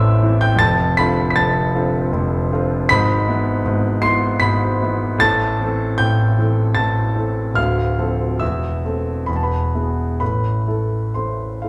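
Set in a wet recital-hall reverb with a 1.4-second decay, this melancholic, yearning romantic nocturne in triple metre is carried by a solo grand piano that sounds clear, intimate and natural, placed up front with long sustain and audible action noise, its rubato phrasing moving through minor-key harmony that comes to rest on A minor at 10.2 seconds in a passage cut from a longer piece.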